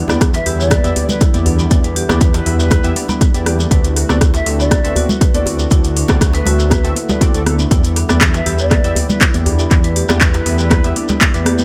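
A punchy, overdriven electronic kick sits up front in this hypnotic afro house excerpt at 120 BPM in E minor, alongside a dark, detuned saw bass that rumbles and beats with sidechain pumping. An afro-pop kit adds handclaps, metallic hi-hats and rim clicks with overdrive and tape echo, while soft-handed congas sit in the background, a tight, cracking djembe stays very quiet, and a grainy shekere carries its own tape echo. A marimba played with medium hard mallets spins vintage, band-limited arpeggios through dub echo and sidechain pumping, and round analog keys punctuate with chorused stabs that decay under a filter sweep and tape echo. A very quiet, warbling pad holds sustained chords underneath, moving from Em7 to D7 at 3.7 seconds and back to Em7 at 7.7 seconds. From 0.3 seconds a mellow, hollow concert flute with vibrato floats at a distance through dub echo, all set in a small room within an echo-heavy mix.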